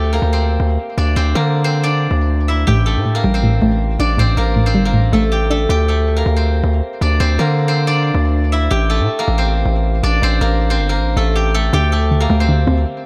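A half-time 4/4 trap groove at 159 BPM drives this melancholic, hard-hitting hip hop excerpt, where a mellow, silvery steel-string zither played with fingerpicks rings up front through tape echo over a heavy, distorted 808-style bass, while a soft, round pluck with chorus joins at 2.7 seconds and returns at 11.7 seconds as the harmony moves between D5 and A7sus4 in light studio reverb.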